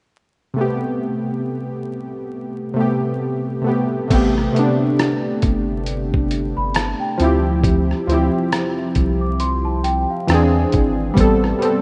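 Detuned, mellow analog keys with chorus and cassette-tape color open this hazy, melancholic lo-fi hip hop excerpt in A minor at 68 BPM with a swung feel, joined at 4.1 seconds by a thumpy, muffled, pitched-down sampler-style drum kit and a deep, round dub sub bass, while a delicate, bell-like celesta with tape echo adds a sweet second line from 6.6 seconds over a rough home-demo mix with light reverb and vinyl crackle.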